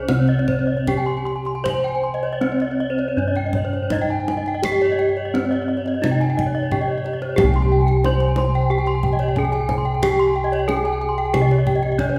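A straight 4/4 pulse moves between 77 and 91 BPM in this shimmering, brilliant Balinese gamelan passage in C pelog, cut from a longer piece. The melody rings out on a bright, airy bronze metallophone struck with a horn mallet and placed up front, its paired tuning giving off beating shimmer. Two more metallophones spin arpeggios above it: one is dry, full and close-miked under a wooden mallet, and the other is dark and smooth under a horn mallet. Underneath, round, close-miked bossed gongs carry the bass with a dry, beating metallic body, while a deep kendang played with hard hands adds percussion with a small-room sound. The ensemble sits in a wet recital hall heard from further back, and the passage shifts into a new section at 7.4 seconds before breaking off at 12.2 seconds.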